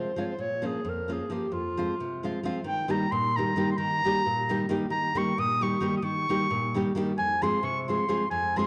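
A dark production set in the lush reverb of a recital hall gives this short Balkan folk passage in 5/8 a bittersweet, virtuosic character. A mellow clarinet carries the melody up front in a classical style, its soft attack and smooth top ringing through the hall from start to finish. Beside it, a fingerpicked nylon-string guitar provides warm, classical accompaniment throughout, moving through Bbm, Fm and Eb.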